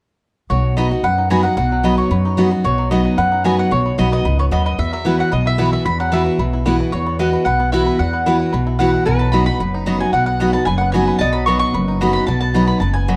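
A straight 4/4 pulse at a brisk 224 BPM drives this lively, joyful bluegrass excerpt in B major, moving from B to Esus2 and back to B. Up front, a double-strung, woody mandolin carries the melody alongside a twangy, fingerpicked banjo set in the background, both touched with plate reverb, while a full-bodied dreadnought guitar picks the accompaniment and a thumpy, gut-strung upright bass plucks the low end. A second, bright mandolin adds stabs from 0.8 s, and a metallic, nasal lap resonator guitar played with slide joins on a second line at 9.1 s, all within a dark, moderately reverberant studio sound.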